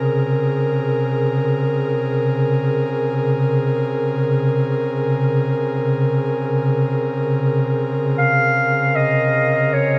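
Soaked in spring reverb and heavy echo, this meditative, spacious ambient fragment of a longer piece drifts in free time in Bb minor, where a breathy, detuned pad with chorus holds a sustained Bbm9 chord throughout and is joined at 8.2 seconds by a mellow, distant clarinet playing a brief solo melody trailed by dub echo.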